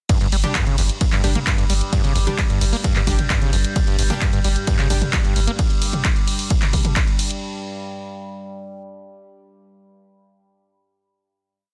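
A dense, heavily limited digital sound carries this brief, dark piece of driving peak-time techno at 131 BPM, where a dry, punchy four-on-the-floor kick drives an analog drum machine's claps, hi-hats, ride and mid toms, the hats, ride and toms pumping over a thick, deep sub bass rumbling on G1, while a squelchy, gritty acid bass riff with dub echo drifts its 12-step loop against the bar, sparse airy supersaw chord stabs echo in the background, and a wave-folded drone with moving overtones, chorus and phaser sustains from 0.9 seconds to 7.5 seconds.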